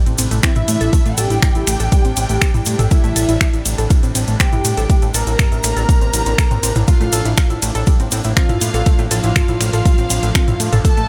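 A deep, tape-warm electronic kick sits up front in this dramatic, cinematic melodic techno excerpt, driving a straight pulse from 0.4 seconds. Beneath it, a fat analog bass of thick sawtooth and square waves with a moving notch pumps against the kick, while a deep house kit adds finger snaps, metallic hats, ride cymbal and toms, joined by a grainy, distant egg shaker in the background. A warbling, lo-fi pluck spins arpeggios through chorus and dub echo, and a bold, detuned unison lead carries the melody with vibrato and a sub octave. Above it, a dark, woody chamber violin section plays a second line with its own vibrato and echo, as an evolving wavetable pad morphs behind everything with phaser and built-in reverb. The harmony rests on C over A before shifting to Bb over A at 6.9 seconds, and the overall sound is dry and close.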